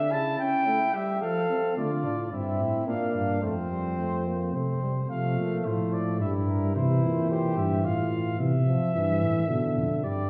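Classical imitative canzona for brass ensemble in triple metre, cut from a longer piece, with a serious, driving mood and a roomy recital-hall reverb. A mellow trumpet with light vibrato carries the melody over a warm flugelhorn second line, while a smooth-topped trombone with soft attack supplies the accompaniment. An up-front tuba enters on the bass at 1.8 seconds, and the flugelhorn drops out at 8.4 seconds as the passage moves through its final section.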